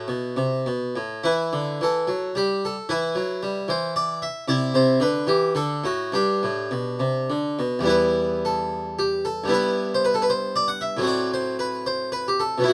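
A classical, baroque-style suite movement for solo harpsichord, this solemn and introspective fragment moves in 3/4 at a rubato pace between 99 and 117 BPM. It opens in E minor, turns toward G major at 4.5 s, and settles back into E minor at 7.9 s, where the opening material returns. The plucked, full tone of the Flemish-style harpsichord, with its two sets of strings, sits up front in light reverb and spans from E2 to F#5.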